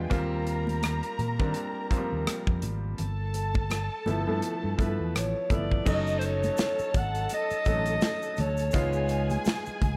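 Light reverb and small-room ambience frame this smooth, silky slice of lush 1970s-style soul at 84 BPM with a swung sixteenth feel, where a polished acoustic drum kit with a punchy kick and an up-front, amped fingered electric bass anchor clear, short-sustained baby grand piano chords, a distant bowed violin section adds expressive vibrato and portamento as a second line, very quiet damped congas sit close and dry, a breathy, whispered alto saxophone takes the melody from 4.8 seconds, and a grainy tube shaker joins in the background at 5.9 seconds.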